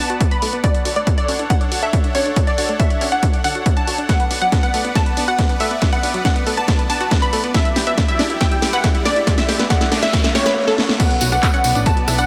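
Euphoric and driving, this uplifting trance passage in B minor moves at 139 BPM in a straight 4/4, cut from a longer piece and built as a long build-up that breaks into a drop at 11.0 seconds. A punchy electronic kick sits up front, joined by a layered techno kit with a cracking snare, handclaps, rim clicks, crash cymbal and warm hats, re-recorded in a large room, with drum fills running through much of the build. In the background, a lush, detuned unison pluck carries the melody with analog chorus and delay, while a catchy square-wave unison lead with vibrato and a moving notch traces a second line through dub echo. Beneath them, a bright supersaw pad holds slow-swelling sustained chords over Bm, Dmaj7 and Em7, an analog pluck spins chorused arpeggios, and a round, mellow FM bass with tube saturation anchors the low end, most of these parts pumping against the kick. A very quiet riser and noise sweep enters at 6.6 seconds, and a jingly, close acoustic tambourine arrives with the drop, all bathed in a huge ambient reverb.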